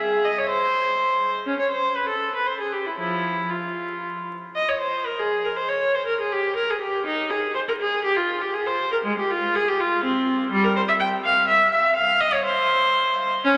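A haze of vinyl crackle and a long, wet cathedral reverb surround this short classical fragment, a baroque-style suite movement in 3/4 for unaccompanied viola, cut from a longer piece. The single bowed viola sits up front yet sounds distant in the vast space, its gut-string tone rich and reedy with light vibrato in a period style, moving with rubato at around 113-126 BPM. The mood is introspective and solemn, beginning in F minor and turning to Ab major at 4.6 seconds.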